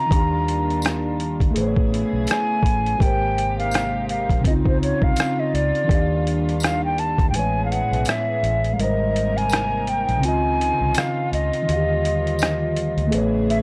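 A breathy, hollow flute carries the melody up front from the start, with vibrato and an analog delay, over a mellow tine electric piano with a cassette-tape haze and bowed strings holding sustained chords in a reedy, gut-string tone. This is a dreamy, cosy lo-fi hip hop cut in Ab major at 83 BPM with a gentle swing, drifting through lush major-ninth chords. A round, foam-muted electric bass with tube saturation and a compressed, pitched-down sampler drum kit of hi-hat, thumpy kick and rim click join at 0.1 seconds, a jingly tambourine sits in the background, and the kick falls away from 7.3 seconds, leaving a dry, gritty sound with light reverb.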